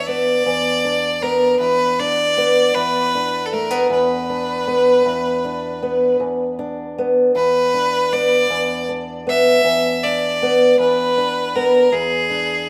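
Acoustic country blues in a slow 12/8 feel, this laid-back, gritty fragment is cut from a longer piece and runs about 12.7 seconds over a single E7(no3) harmony. A bright, focused fiddle carries the melody, bowed by one player with a light vibrato and a slapback echo, sitting up front in a fairly high register. Beneath it, a fingerpicked old ladder-braced acoustic guitar supplies the accompaniment, its dark, woody, boxy tone and old strings giving the low end a worn character as it reaches down into deep bass notes. Both parts play together from start to finish, each placed prominently in the mix. A moderate, lush hall reverb surrounds the duo, while the rough home-demo mix lends the recording a casual, unpolished feel.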